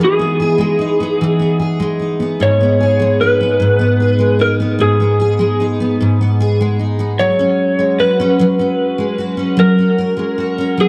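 A dark, warm production places the music in a small room washed by a wet echo-chamber reverb, framing this heartfelt, romantic pop fragment in 6/8, cut from a longer piece. Up front, a full-bodied dreadnought steel-string acoustic guitar, picked and double-tracked, carries the accompaniment through Emaj7, G#m and F#add9. A slightly broken-up, compressed electric slide guitar, also up front and played with fingerpicks, sings the melody through tape echo, both parts sounding from 0.0 to 10.9 seconds.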